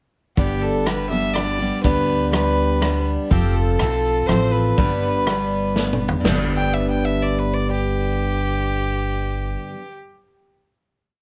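Sunny and nostalgic, this short honky-tonk and classic country piece in 3/4 at 122 BPM in G mixolydian opens with a nasal, earthy fiddle solo with light vibrato out front over bright, full-bodied strummed acoustic guitar in open chord shapes, a woody, thumpy pizzicato upright bass playing root-and-fifth lines with walk-ups, and a vintage kit with dark cymbals and a tight kick, whose drum fill at 5.8 seconds leads into a final chord held from 6.2 seconds, all captured with close, detailed microphones and light reverb.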